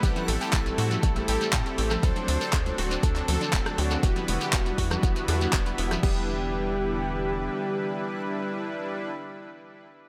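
Expansive and bittersweet, this progressive house passage in straight 4/4 opens mid-drop, with an overdriven, up-front electronic kick anchoring a tape-warm deep house kit of crash, handclaps, hi-hat and rim click. A tight, punchy sequencer bass drives underneath until 7.5 seconds, while a grainy shekere and very quiet, vintage congas and bongos add acoustic texture to the groove before the percussion and drums fall away around 6.0 seconds. Above, a thick, dark unison lead carries the melody with delay, joined by smooth supersaw stabs and a lush, bright pluck spinning arpeggios in the background. An airy, breathy pad holds sustained chords with chorus, and a faint reversed, swelling texture adds a dreamy, granular shimmer. Sidechain pumping breathes through the lead, pad, pluck, stabs and bass as the harmony moves from Am7 to D7 to Em7, all set in light digital ambience.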